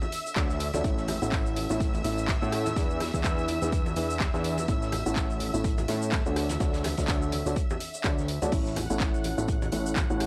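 Feel-good and uplifting, this swung piano house excerpt centers on a clear, woody upright piano riff with low-pass filtering, analog delay and sidechain pumping, entering at 0.4 s alongside a fat, detuned sawtooth analog bass and a punchy, overdriven electronic kick up front, while shimmering string machine violins hold bright sustained chords through ensemble chorus, an overdriven house drum kit adds bright hats, handclaps, rim clicks, shaker and crash, ringing congas and tambourine sit in the background, and a very quiet, muffled lo-fi vintage kit of hi-hat and snare hides underneath, all in a dry, gritty small-room sound moving from Dmaj7 through A and E7.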